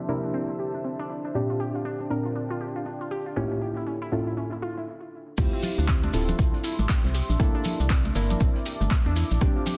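A dense, heavily limited mix with light small-room ambience and a low-pass filter opens this hypnotic deep house excerpt at 119 BPM in 4/4, swung on the 16ths. A moody, detuned ambient pad sustains chords through a filter sweep, with chorus, built-in reverb and sidechain pumping. A soft, nasal chord stab up front echoes through analog delay, and a warbling, lo-fi pluck arpeggiates with phaser, 12-bit grit and delay. The harmony moves through C13, Bb6 and A7b9b13, and everything stops briefly at 4.9 seconds. At 5.4 seconds the drop lands on Dm11: a hollow, organ-like FM bass and an overdriven, deep electronic kick come in up front. Around them, a dry analog drum machine adds crash, handclaps and filtered hats, a gritty soul kit adds very quiet hi-hat and a fat snare, and bright, damped congas and grainy maracas sit in the background.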